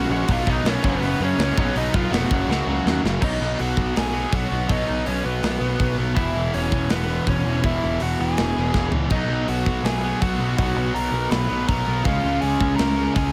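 A straight 4/4 punk rock drive powers this upbeat, energetic cut from a longer piece, dropping into a half-time feel at 3.2 seconds that carries it to the finish. A tight metal drum kit in a big room, with bright cymbals, a medium-tuned snare and a tight kick, throws in fills at 2.5 and 8.7 seconds. A biting overdriven lead guitar carries the melody, while two picked electric guitars, one compressed and distorted and the other overdriven, grind out riffs in the background. A thick, double-tracked fuzz guitar plays a riff very quietly underneath. A warm, amped fuzz bass anchors the low end as the chords move from B through E to C#, all under a light reverb.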